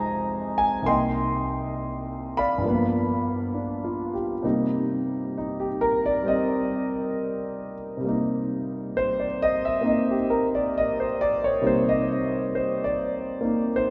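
Swinging and smoky, this solo jazz piece in C minor moves at a slow 67 BPM in 4/4 with a swung eighth-note feel. A concert grand piano plays alone across a range from deep bass up into the upper register, its tone intimate and up front with audible action noise. It moves through Fm7, Cm7 and G7#9 before settling back on Cm7 at 4.4 seconds, where a solo passage begins, all in a long, wet church reverb cut from a longer piece.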